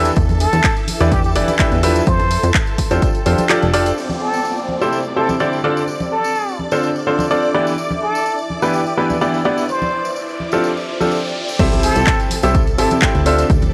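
A straight 4/4 house groove drives this euphoric, feel-good piano house excerpt, built on a punchy, layered electronic kick and a tape-tinged house kit of crash cymbal, handclaps and hi-hats, with acoustic tambourine and congas heard in a small room throughout. The kit and the plucky analog bass drop away around 4.0 s, then return together for the drop at 11.6 s, the bass funky and detuned with a fast filter pluck, tube saturation and sidechain pumping. Up front, a bright baby grand plays a riff that sounds worn and intimate, its action noise audible and its short notes trailed by tape echo and pumping. A plunger-muted trumpet carries a jazz-style solo melody full of wah-wah, vibrato and scooped notes, also fed through tape echo. In the background sit a shimmering vintage string machine with ensemble chorus, a blurred, evolving granular cloud pad with its own reverb, both pumping, plus a downlifter, riser and impact, all set in a lush hall reverb with a gritty cassette-tape character.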